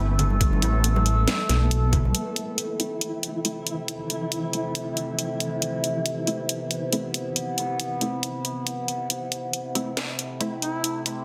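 A dense, heavily limited deep dubstep excerpt in A minor with a cavernous, heavy mood, set in a moderate digital room ambience at 138 BPM with a swung half-time feel. A resonant, wave-folded drone with moving overtones sustains throughout over a flickering, grainy texture, while a rumbling detuned saw bass, a gritty pitched-down kick and ringing congas in echo drive the opening until about 2.1 s. A cracking, tape-warm garage kit plays from 0.2 s onward, and muted, chorused dub chord stabs, heard briefly at the very start, return at 2.8 s. A build-up begins at 9.1 s, and a mellow duduk with vibrato and scooped notes surfaces briefly on E4 at 10.6 s, trailing dub echo.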